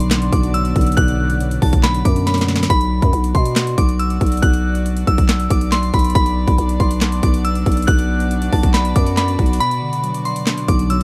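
Dark, brooding trap hip hop at 139 BPM with a half-time feel in B phrygian, led by a glassy FM synth bell melody that rings with chorus and analog delay over sustained, reedy string-section chords with a gut-string tone and a smooth top. A growling, buzzy 808-style bass and an up-front, overdriven trap kit of hard-clipped kicks, sharp snares, claps and metallic hats anchor the echo-heavy, dry mix. A mellow tine electric piano sounds through 2.7 seconds, where a drum fill closes the opening phrase, then returns at 9.6 seconds as the beat breaks.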